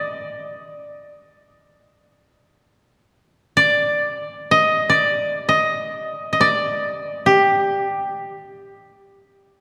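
Set in the long, wet reverb of a church or concert hall, this solitary, meditative fragment of Japanese chamber music features a solo koto, mellow, woody and up front, plucked with fingerpicks between G4 and Eb5 for its full 9.6 seconds.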